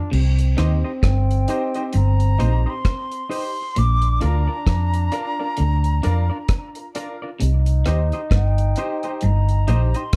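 A dark, round, foam-muted electric bass sits up front in this meditative, laid-back roots reggae excerpt, its amped vintage tone anchoring the low end from 0.1 seconds. Beside it, a deep reggae drum kit with a tight, dry kick, hi-hat, rim click and crash cymbal holds a relaxed, swung groove, while a twangy, scooped, picked electric guitar plays a clean riff in the background. From 0.6 seconds a fingered hollow-body guitar adds compressed accompaniment touched with dub echo, and a brilliant upright piano drops woody stabs, its action noise audible and its notes ringing long. A pure, mellow silver concert flute enters at 1.1 seconds with a tongued melody and gentle vibrato, carried on dub echo, as a vintage trombone plays a second line underneath, also echoed. The production is dark and warm, with light reverb.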